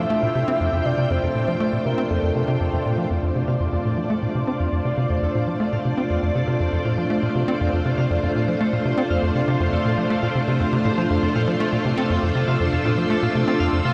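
This excerpt opens with a soft, octave-layered synth lead singing a brief, round melody over lush vintage string-machine chords and a tight, punchy sequencer bass riff, all set in F major at 120 BPM in a straight 4/4. It's ambient, sequencer-driven space music with a cosmic, expansive mood, and the string machine's bright ensemble chorus and shimmer reverb spread a lush wash through the mix while the driving bass, with its ring-modulated filter pluck and tape echo, sits up front. The lead, coloured by chorus, tremolo and tape echo, drops away by 2.8 seconds, and at 3.1 seconds a slightly broken-up, twangy electric guitar fades in with picked arpeggios, lingering in the background under shimmer reverb and tape echo. From 7.9 seconds a very quiet pulsing, tempo-synced texture joins with a slow attack and long release. The whole mix is dreamy and soaked in a huge ambient reverb, with a cassette-tape character.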